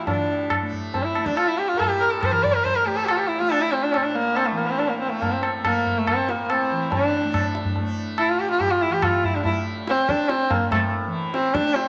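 A bowed sarangi and a tanpura drone open this short cut from a longer Hindustani classical performance in raga bhairavi on A, with the tabla joining at 0.1 seconds. The mood is solemn and longing, set at 141 BPM in a straight 4/4 that gradually speeds up across its 11.9 seconds. A single sarangi player carries the melody up front from A3 to D5, with a biting, nasal, earthy tone, a smooth top, light vibrato and gliding portamento, its sympathetic strings ringing and a tape echo trailing each phrase. Beneath it, the softly plucked tanpura sits quietly between A2 and A3, bright and buzzing with a shimmering sustain. The high-tuned tabla rings out with a compressed, saturated edge. The whole performance sits in a wet echo-chamber studio reverb with a decay of 1.4 seconds.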